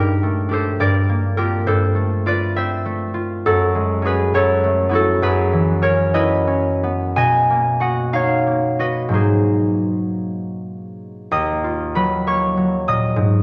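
Classical solo concert harp piece, mysterious and gentle, in a rubato 6/8 at 50-70 BPM, its mellow, ringing fingerpicked tones sitting up front and spanning Eb2 to Eb6 through add9 and ninth chords that settle into Eb minor from 3.4 s, bathed in a moderate scoring-stage reverb, before a new section opens on Ebmadd9 at 11.3 s in this excerpt cut from a longer piece.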